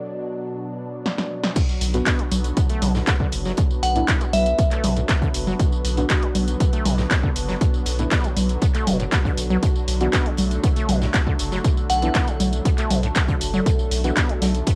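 A squelchy, resonant sawtooth acid bass riff winds through this trippy, hypnotic acid house excerpt in B minor at 119 BPM, its overdrive, 12-bit grit, tape echo and sidechain pumping giving it a gritty, breathing pulse from 1.6 seconds. A lush, detuned unison pad holds sustained chords from the very start, coloured by chorus and phaser, while a punchy analog drum machine with congas, handclaps, tambourine, hi-hat, snare and crash enters at 1.1 seconds with a short fill, its filtered, tape-soaked hits sitting up front. The drop lands at 1.6 seconds with a punchy electronic kick and a very quiet acoustic rock kit adding hi-hat and snare, joined moments later by a round, deep analog bass with tube saturation pumping underneath. Soft, nasal chord stabs drift in the background with chorus and tape echo, and a very quiet, moody ambient pad adds a dark haze. Brief flashes of a glassy, crystalline FM bell melody with a warbling chorus and phaser sparkle above, and the whole mix carries the light reverb and warm feel of a home cassette recording.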